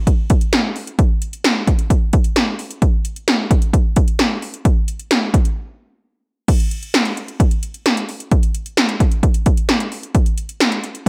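A straight 4/4 pop pulse at 131 BPM drives this short, melancholic and cool excerpt, cut from a longer piece. The only part is a set of 80s-style electronic drums, entering at 0.1 seconds and sitting up front, built from kick, snare, hi-hat and crash cymbal. The kick is punchy, the snare carries a gated snap, and the hats have a metallic edge, giving the kit a blend of electronic and analog character. A break arrives at 5.6 seconds, and at 6.5 seconds the pattern moves into a new section that runs to the close at 11.1 seconds. Light reverb and a digital ambience frame the sound.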